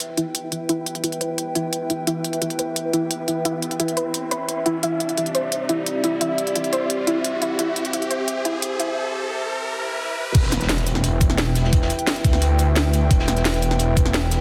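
Dark technical drum and bass at 174 BPM in E minor, this tense, mechanical excerpt builds for about ten seconds before dropping hard. A deep, moody analog pad sustains chords from Em to C throughout, its detuned, wave-folded tone chorused and pumping against the sidechain, while a soft, round pluck traces arpeggios through a filter sweep with delay until 8.9 s. A layered electronic drum kit with a cracking snare, crisp hats, cabasa and crash sits up front over a riser, and a swell leads into the drop at 10.3 s, marked by an impact. There a thick, detuned sawtooth bass enters with overdrive and chorus, joined by a knocking electronic kick and a gritty, saturated breakbeat kit tucked in the background. The whole mix is heavily compressed with a radio-like, filtered edge and set in a lush hall reverb.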